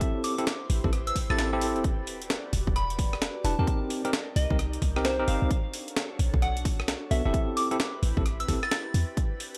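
Skippy and bouncy, this short two-step UK garage cut at 131 BPM swings its sixteenths over Am7, Em7, Cm7 and Bm7 chords, with a punchy, tape-warm kick up front, a gritty sampler-style breakbeat kit of hi-hat, rim click and high-tuned snare, a tight, mellow 808-style bass from 0.7 seconds, bright bell-like tine electric piano stabs with tape echo, a pure FM synth bell melody carrying chorus, phaser and echo, and an airy, breathy pad pumping softly in the background, all captured with dry hardware grit and transformer saturation.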